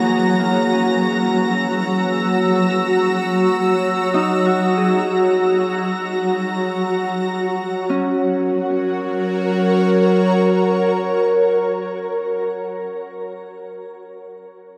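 Weightless and luminous, this free-flowing ambient excerpt sets a shimmering, up-front pad with octave-up shimmer and a filter sweep over a fingerpicked Celtic harp ringing through diffuse delay and a tense, string-like drone in the background, while a biting studio violin section adds a high texture until 7.9 seconds, when the Esus2 harmony resolves to F# inside a huge reverberant space.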